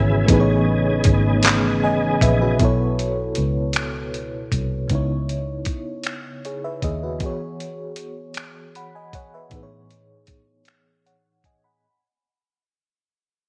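A dark, up-front FM electric piano with tremolo opens this slow, sensual six-eight R&B fragment together with a smooth tonewheel organ with chorus vibrato and fast rotary speaker and a round, foam-muted fingered electric bass, while a gritty, compressed sampler-style kit of finger snaps, handclaps, hi-hat and thumpy kick enters at 0.3 seconds. The organ's sustained chords drop out at 2.6 seconds as the whole passage begins to fade, and the amped bass stops at 7.2 seconds, leaving the tender electric piano and dusty drums under light reverb over lush extended chords such as Amaj9#11 and C#m9.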